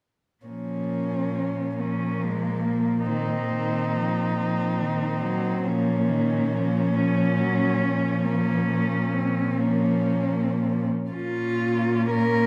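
Solemn and yearning, this short classical fragment for cello ensemble unfolds in a slow, rubato 6/8 in B-flat minor, at around 37-47 BPM in dotted quarters. Four bowed cellos with vibrato enter almost together, the second line at 0.4 seconds and the others at 0.5 seconds: a smooth, even melody spanning Bb3 to Bb4 sits over a close, soft-attacked second line, a dark accompanying part with portamento, and an expressive, up-front bass anchored on Bb2. A moderate scoring-stage reverb lends the ensemble space, while the harmony moves from Bb minor to F over Bb before returning to Bb minor at 11.1 seconds.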